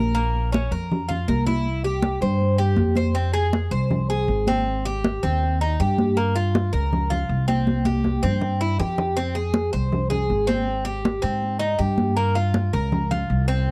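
Cuban tres and upright bass open this danceable son and guajira fragment together, and high-tuned congas join at 0.2 seconds. The tres plays metallic, double-strung arpeggios with some octave-doubled strings, sitting up front beside a woody, thumpy pizzicato bass on steel strings. The congas ring out under soft hands and sound close and dry. At a brisk 160 BPM in straight 4/4 and F minor, a short opening passage gives way to a longer one that cycles through Fm, Abmaj7, Gm7b5 and C, with a drum fill from 7.7 seconds. The whole fragment has the dry, close feel of a 1970s studio with little reverb, and the warm mood invites dancing.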